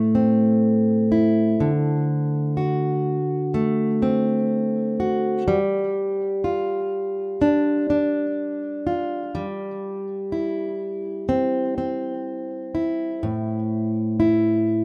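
A rough home-demo sound sits in a small room with a moderate touch of ambience, giving this short pop fragment an intimate, unpolished feel. The only part is a fingerpicked, plugged-in steel-string acoustic guitar, a jumbo with a full-bodied tone placed up front in the mix. Tape echo colours the guitar, adding a trailing haze to its notes as they range from A2 up to A4. The harmony moves from Am to D7 at 1.6 seconds, then to G5 and C/G before settling back on Am at 13.2 seconds. The mood is emotional and melancholic, and the passage ends abruptly, as it is cut from a longer piece.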